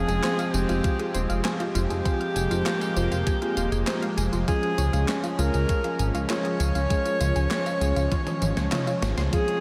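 A clear, close-miked alto saxophone carries the melody in a soloist's jazz style, its soft attack and vibrato trailing into a diffuse ambient delay across this cinematic, nocturnal synthwave passage at 99 BPM in a straight 4/4. Beneath it, a chorused pulse-width pad holds mellow, shimmering sustained chords that pump against the sidechain, moving from F minor to D-flat major at 4.5 seconds. A dark, glossy synth bass sits up front with a thumpy, tape-warm electronic kick that enters at 0.8 seconds, while a round analog pluck spins bright arpeggios with chorus and delay in the background. A lush FM electric piano layered with a soft pad adds decaying stabs colored by chorus, tremolo and delay. A gated 80s digital drum machine supplies handclaps, hi-hat, snare, tambourine and toms with gated reverb, closing on a drum fill from 8.1 seconds. The whole mix is dreamy and soaked in a huge ambient reverb, a short cut from a longer piece.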